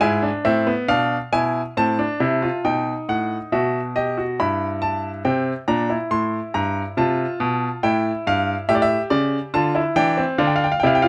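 Elegant and stately, this cut from a longer baroque-style three-part fugue in 3/4 features a solo baby grand piano with a brilliant, polished tone and short sustain, spanning G2 to C6 and captured up front by close, detailed microphones in a dry room, with a new section beginning at 2.6 seconds as the harmony moves through a chain of chords studded with dominant sevenths.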